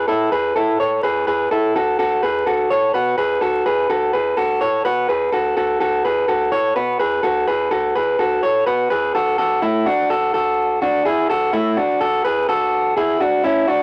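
An electric guitar played through a small old amp opens this short indie pop excerpt, playing alone at 126 BPM in a straight 4/4 with a nostalgic, bright mood. The tone is slightly broken-up and picked, with a compressed, lo-fi character from cassette tape, and the guitar sits up front in the mix, moving between A3 and C#5. The harmony starts on Esus4, settles onto F#m at 2.0 seconds, and shifts to Dadd9 at 9.6 seconds as a new section begins. A moderate booth ambience gives the guitar a small, close room around it, while vinyl crackle and the character of a home cassette recording add a worn, homespun texture. The piece is tuned slightly sharp, to A4 = 441 Hz, and the clip ends at 13.8 seconds, cut from a longer piece.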